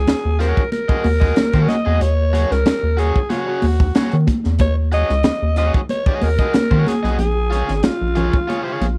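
Sly and driving, this short funk excerpt puts a breathy, raspy alto saxophone with slapback echo up front over a rubbery, bouncy square-wave bass and a crisp fusion drum kit with a high-tuned snare and punchy kick, while bright congas sit in the background and an overdriven electric guitar adds picked accompaniment, all dusted with vinyl crackle as the harmony moves from Ebm7 to Bbm7 at 7.2 seconds.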